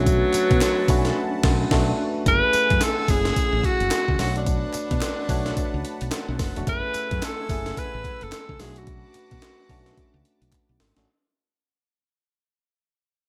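R&B in a new jack swing style, this confident, punchy excerpt moves at 109 BPM with a swung sixteenth-note feel, cycling between Bm7 and F#m9. An up-front mellow tenor saxophone with light vibrato carries the jazz-style melody over a worn, slightly out-of-tune tine electric piano, a bright, swirling analog pad in the background with phaser, chorus and tremolo, and a dark, round fretless bass bathed in lush chorus. A gritty, compressed breakbeat kit with a thumpy kick, high-tuned snare, tambourine and gated reverb drives the groove alongside very quiet, dry handclaps, hitting a band accent at 1.2 seconds before a fade-out from 2.3 seconds and a closing drum fill at 10.5 seconds.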